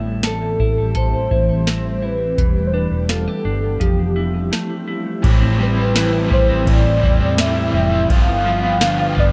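Blissful and floating, this dream pop excerpt drifts over an ethereal pad with phaser and ensemble chorus, while a dark, clean semi-hollow electric guitar plays arpeggios through subtle chorus and digital delay, and a round, foam-muted vintage electric bass holds the low end. A booming analog drum machine with a deep kick, crisp snare, metallic hats, ride and tambourine sits dry and up front from 0.2 seconds, and a velvety synth lead with vibrato, chorus and delay carries the melody from 0.3 seconds. At 5.2 seconds a bright, overdriven, double-tracked semi-hollow guitar joins with harmonic tremolo, all within a dark, ambient production.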